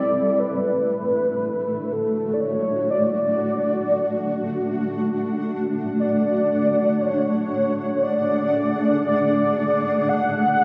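A velvety, detuned sawtooth synth lead with chorus and tape echo sings its melody over a cloudy, evolving granular pad of blurred sustained chords from the start of this peaceful ambient excerpt in free time and D lydian, both parts up front in an echo-heavy mix bathed in a 2.2-second spring reverb.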